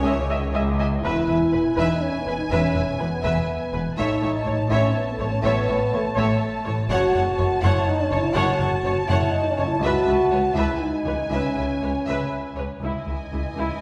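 Heard from further back in a reverberant scoring stage, this cut from a longer cinematic orchestral score sounds heroic and dramatic, its sustained lines blooming into a wet hall. The piece moves in a stately three-beat metre, with the mellow French horn section holding present, soft-attacked chords at the centre of the blend. Two bowed violin sections sit high above: one carries a lush, smooth-topped melody, while the other adds a rich, focused second line beneath it, both shimmering with vibrato. A studio viola section fills the middle with warm accompaniment, and the low end rests on a lush cello section and a clear, distant double bass section playing even, smooth bass. A roomy trombone section sounds only in the opening 0.8 seconds, tucked into the background. The harmony travels from a C#madd9 chord through E, A, F#m and C#m7 before returning to C#madd9 at 12.8 seconds.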